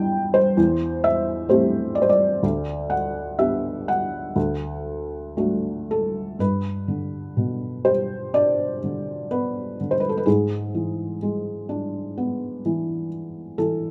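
Calm and tender, this short classical excerpt is a lyrical piece for solo piano in G major, moving in a rubato 4/4 at roughly 57-66 BPM. A felt-muted upright piano carries everything from start to finish, its tone soft and mellow, with a thick-felt hush and short sustain that keep each note close and intimate. Sitting up front in the sound, it spans a range from D2 up to A5, touched by a light reverb. The opening passage drifts through Em7, G/D and D before a second section arrives at 6.4 seconds, settling on G and then turning to E7/G# at 10.3 seconds. Cut from a longer piece, the fragment ends at 13.9 seconds.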